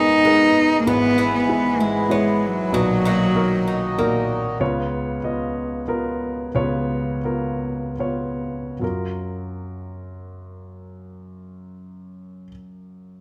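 An intimate, up-front cello with light vibrato and an airy, sul tasto bow carries the melody of this hopeful acoustic folk-pop ballad in 3/4, bathed in plate reverb, while a reedy, breathing harmonium holds mellow chords and a woody, boxy old acoustic guitar picks arpeggios. Cello, harmonium and guitar fall away by 4.7 seconds, leaving the up-front grand piano, with its audible action noise, to carry on alone as the music slows between 4.6 and 8.8 seconds. The piece settles on an F#maj7 chord at 8.8 seconds within a moderate, large studio room, and the clip ends mid-piece.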